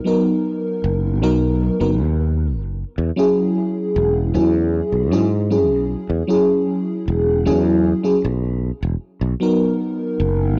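Vaporwave in a dreamy, nostalgic mood, this short excerpt cut from a longer piece opens with a lush, full-bodied FM electric piano layered with a soft pad, its mellow tones colored by tremolo, analog chorus, analog delay and cassette tape, moving from Bmaj7 to E69 and back at 9.2 s. A sustaining fretless electric bass enters at 0.8 s, growly and up front beneath the keys. The production is dark and warm, set in a moderate plate reverb with a cassette-tape character.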